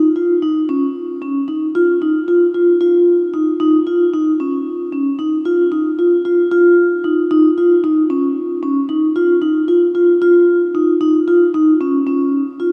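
A vibraphone played with soft mallets carries this tense, intricate progressive instrumental alone, its metallic, ringing tone softened by a mellow edge and a slow motor vibrato, sitting up front across the full 12.7 seconds within a narrow span from C#4 to E#4. The piece moves in a straight 7/8 at 227 BPM counted in eighths, giving the brief fragment from a longer work a restless, asymmetrical pulse. A cathedral-like reverb with a 4.8-second decay surrounds it, lending the church or concert hall setting a long, hovering tail.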